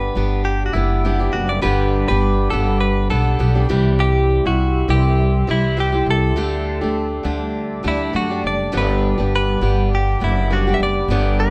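A twangy, scooped clean electric guitar carries the melody over a dark, picked steel-string acoustic with audible finger squeak and a thumpy, woody pizzicato upright bass up front, with a shimmering, ethereal pad of chorus and phaser entering at 0.5 s in the background, all in this easy-going, sunny acoustic pop excerpt in G major at 102 BPM with a light sixteenth-note swing, moving through G, C, Dsus4 and back to G in a rough home demo mix with light reverb.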